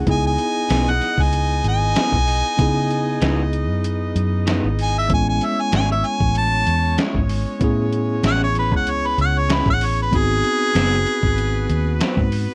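A gritty, pitched-down sampler-style drum kit with a thumpy kick and overdrive sets a straight-eighth soul blues groove under a dark, round, foam-muted fingered bass sitting up front, in this mournful, brooding clip from a longer piece. A clear, overdriven harmonica carries the solo melody with light vibrato and scooped notes, while a clean tine electric piano, a slightly broken-up lo-fi guitar through a small old amp adding stabs from 0.7 seconds, and a brilliant horn section holding sustained, octave-doubled chords fill out the harmony moving from C#m9 through Amaj7 to G#7#9. The sound is dry and close, like a 1970s studio session.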